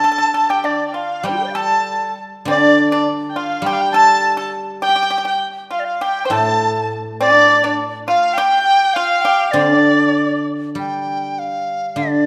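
A moderate recital-hall reverb surrounds this wistful, tender passage for Chinese chamber ensemble, cut from a longer piece and flowing in a rubato 2/4 feel. A large bamboo dizi with a buzzing membrane carries the melody up front, pure, tongued and expressive with vibrato, while a rich, smooth bowed erhu with portamento and a dry, percussive fingerpicked pipa trace second lines. A ringing, silvery guzheng accompanies throughout, and once the erhu and pipa stop at 10.4 s, the dizi and guzheng carry on alone to 12.3 s.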